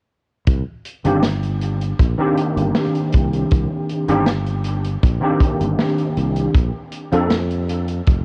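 A straight 4/4 pulse at 79 BPM comes from a punchy, up-front kick drum, with hi-hat and a medium-tuned snare from a natural acoustic kit sitting lower in the mix, while a growly, bright fretless electric bass sustains beneath from 0.5 s. This woozy, melancholic vaporwave excerpt in C minor rests on a Cm9 chord before shifting to Bb5 at 6.5 s, and a gritty, overdriven tine electric piano played through a combo amp, thickened with ensemble chorus and tape echo, carries the accompaniment from 1.0 s to 7.3 s. Light reverb and the wobble of worn cassette tape give the whole recording a warbly pitch drift.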